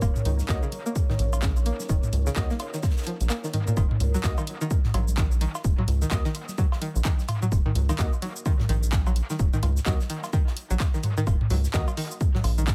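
A punchy, overdriven electronic kick drives this cool, sparse minimal techno excerpt with a swung sixteenth feel, joined by a rubbery, hollow square bass up front, an overdriven house kit with bright hats, claps and shaker, a very quiet, airy studio kit of hi-hat and snare, tape-toned electronic cowbell, congas and toms, a twangy, string-like resonator pluck riff with chorus and analog delay, and a mellow, percussive organ stab in the background. A deep, moody pad sits underneath until the drop arrives at 3.8 s, all within a dry but echo-heavy mix.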